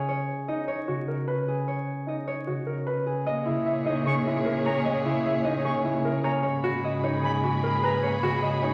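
Two thumb-plucked concert harps open this brief excerpt of minimalist classical pattern music in G# minor: one carries a bright, ringing melody up front while the other rounds out a low accompaniment. A warm grand piano joins at 0.5 seconds with arpeggios, and the urgent yet meditative pulse moves in a straight 4/4 at 151 BPM over a G#m9 chord. At 3.3 seconds the harmony shifts to A#m7b5 as a dark, distant chamber string section enters with bowed, vibrato-laden sustained chords, while a rich solo cello adds an expressive bass line with soft attacks and portamento. From 4.1 seconds an airy concert flute traces its own crisp-edged arpeggios with vibrato, sitting far in the background, before the music returns to G#m9. A recital hall reverb and a layer of vinyl crackle lend the whole passage a faintly aged, spacious quality.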